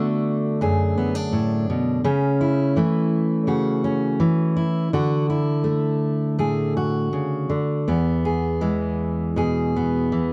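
Gentle and pastoral, this brief folk excerpt features a lone fingerpicked steel-string acoustic guitar in E mixolydian, moving at a rubato 82 BPM in 4/4 through Bm7, A/C#, D and E before it is cut off at 10.3 seconds. The jumbo guitar sits up front with a dark, full-bodied tone and audible finger squeaks, spanning a range from E2 to G#4. A light reverb colours an otherwise dry, close recording with a 1970s studio character, and the tuning rests at A4 = 441 Hz.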